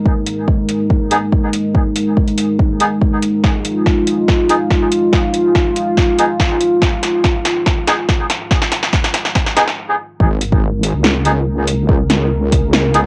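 A heavy, detuned sawtooth wobble bass drops in at 10.2 s in this meditative deep dubstep piece at 142 BPM in half-time, following a build-up with a drum fill from 3.4 s and a brief stop, while a moody, chorused analog pad sustains deep chords alongside reedy, nasal melodica stabs steeped in dub echo, and an overdriven electronic kick and deep house kit with punchy snare and metallic hats sit up front, the whole home cassette recording wrapped in a modest booth ambience.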